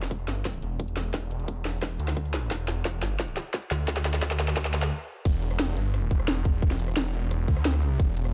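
Dark technical drum and bass with a futuristic, aggressive mood, this short cut from a longer piece builds through a drum fill on a kit with a cracking snare, crash, hi-hat and rim click over a tight electronic kick and a snarling, detuned saw bass that growls up front with distortion and sidechain pumping, halts briefly at 4.9 seconds, then drops at 5.3 seconds, all set in a dark digital ambience.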